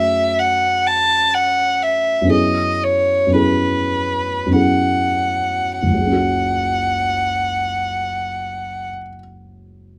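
Close, detailed microphones and a light reverb place a bowed violin and a dark baby grand piano up front in this mysterious, wistful impressionist classical piece in 3/4, played with rubato and slowing over its first 5.8 seconds. The single violinist carries an expressive melody with vibrato, portamento and a soft attack, while the mellow, intimate piano accompaniment, with its short sustain and audible vintage action noise, moves through added-ninth and suspended harmonies. The violin stops at 8.9 seconds, and the piano continues alone until the excerpt ends at 10.0 seconds.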